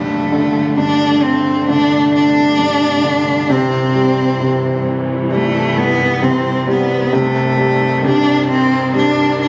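Tender, emotional pop at a slow 66 BPM in 4/4, where a rich, focused solo cello sings the bowed melody with vibrato up front over an intimate grand piano with audible action noise, while a studio string section with expressive portamento holds sustained chords in the background, a very quiet electronic impact sounds until 3.5 s, and the harmony moves from Gsus2 to C to Cm in a light reverb with small-room ambience, like a phone recording made in the room.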